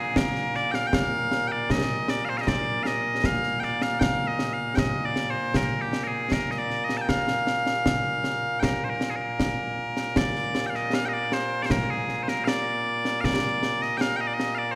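A straight 2/4 pulse drives this proud, ceremonial excerpt of traditional Scottish pipe music, where loud, piercing bagpipes carry a continuous solo melody up front over close, acoustic concert snare and bass drums with bright cymbals, all set in the moderate reverb of a church or concert hall, with the tune moving into a new section at 10.2 seconds.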